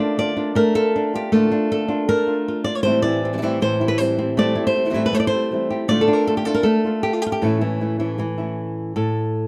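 A fingerpicked acoustic flamenco guitar carries the melody up front, its fresh strings sounding warm under a plate reverb as it ranges from A2 up to D5. This dramatic, fiery flamenco fragment is cut from a longer piece and moves at 157 BPM in a straight 4/4. A second fingerpicked flamenco guitar sits lower in the mix playing stabs, its warm tone marked by audible finger squeak. The harmony rests over an A in the bass, moving through Bb/A, C/A and Dm/A before landing on A. The stabs stop at 9.0 seconds, and the melody guitar rings on alone until 9.5 seconds. Close microphones and a moderate studio room give the recording an intimate, detailed sound.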